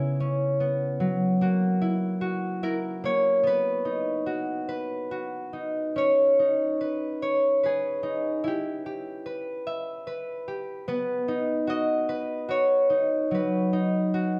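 A children's lullaby in a gentle 3/4 sway, this short passage cut from a longer piece feels tender and sleepy, its pulse stretching and relaxing freely. A solo concert harp carries everything from 0.0 to 14.4 seconds, fingerpicked and ringing, placed up front with a warm, acoustic tone that spans from C#3 to E5. The opening phrase moves from C#m7 through F#7 to settle on B, and at 6.0 seconds a second section begins on Badd9 before a darker turn to Em. It returns home to B and closes on B/F#, leaving the cadence open. A moderate recital hall reverb gives the strings a gentle halo of space around each note.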